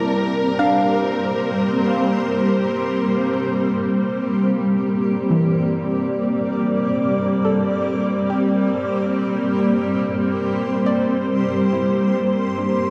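Melancholic and spacious, this ambient excerpt in 3/4 places an up-front, cloudy, detuned granular pad sustaining a Gmadd9 chord over a soft, round pluck playing chorused arpeggios through diffuse delay in the background, while a lush, bowed symphonic violin section with vibrato adds texture on Bb4 until 3.6 s, after which the pluck fades out through 12.9 s, with shimmer reverb on all three parts and the whole dark, warm mix set in a lush hall reverb.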